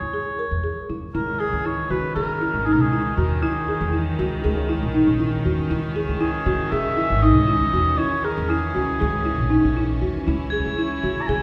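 Pensive yet urgent, this short cut from a longer piece of contemporary chamber music moves in 9/8 at 237 BPM in C# dorian, with a distant, roomy oboe carrying the melody over growly pizzicato upright bass and a woody, rustic marimba played with soft mallets in arpeggios. At 1.1 seconds a rich chamber string section enters with floating sul tasto chords as the harmony shifts from C#m to C#madd9, and shimmering, bell-like crotales add texture from 10.5 seconds. The whole is heard from further back in a wet concert hall.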